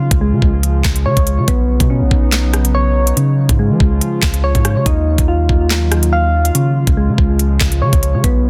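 A dry, dense and heavily limited mix carries a faint mains hum under this short cut from a longer drill track, dark and menacing in mood with a half-time feel. A warbling, lo-fi pad built from detuned sawtooth and triangle tones swells in slowly with chorus and its own reverb, holding nostalgic sustained chords in the background. Up front, soft electric-piano-like synth keys play round, gentle arpeggios through chorus, a low-pass filter and digital delay, their evolving tone striking quickly and decaying. A deep, sine-like 808-style bass enters at 0.1 s with long, mellow notes that strike quickly and fade. The electronic drill kit sits prominently in the mix, with a knocking kick, sharp snare, crisp hi-hats, handclaps and rim clicks. The harmony moves between Db, Badd9 and Ebmadd9 over the course of the passage.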